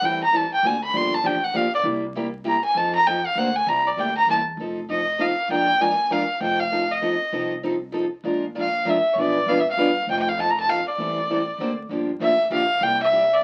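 Playful and swinging, this short cut of acoustic string swing in the jazz manouche style rolls along in a lilting 3/4 with a loose swing. A single bowed violin sits up front and carries the melody, its rich, nasal tone biting with an airy bow and a light vibrato, and its first 4.6 seconds are a solo. Beside it, a picked steel-string parlour guitar plays bright accompaniment on fresh strings, with the odd finger squeak and a boxy body. Far back in the mix, a pizzicato upright bass on gut strings supplies a woody, thumpy low end. The harmony moves through seventh chords such as Am7, Gm7, C7, Bb7 and a Bdim7, with the second section beginning at 4.6 seconds. The whole piece sounds like a very old 78 rpm record, with vinyl crackle over a moderate club ambience.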